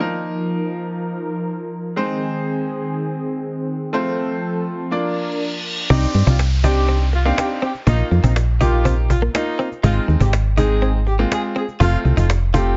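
Bittersweet and driving, this dance-pop excerpt at 122 BPM in 4/4 opens with a clear, vintage-toned grand piano and a smooth, detuned sawtooth pad with chorus, moving through Bbsus4, Ab and F. Electronic reverse cymbal and downlifter effects lead into the drop at 5.9 s, where the pad gives way to a punchy, dark FM bass up front, a snappy, close and dry cajon, a clean, compressed electric guitar riff with analog chorus, and a loose horn section carrying the melody with light vibrato and delay. The bass is the loudest part, the piano plays throughout, and studio reverb surrounds a sound whose highs stop at 7.6 kHz.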